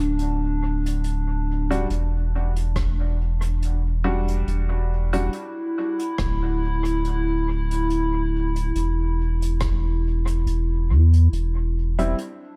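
Spacious and deep, this ambient dub excerpt moves at 70 BPM in 4/4 with a gentle swing on the sixteenths, set in E minor. A warbling, nostalgic pad with a lo-fi, detuned square-and-triangle tone holds sustained chords throughout, its slow attack and long release softened by chorus and built-in reverb. Underneath, a round sine sub bass sits up front, deep and sustained from the start, while a jazz brush kit plays hi-hat and rim clicks quietly in the background, trailed by dub echo. A woody upright piano with short sustain adds stabs from 1.7 to 5.3 seconds, also bathed in dub echo, and a layered electronic kick, re-recorded in a small room and very quiet, thumps from 2.8 to 9.8 seconds. The harmony rests on an E7 chord voiced with its third omitted before shifting to C near the end, all within an echo-heavy mix.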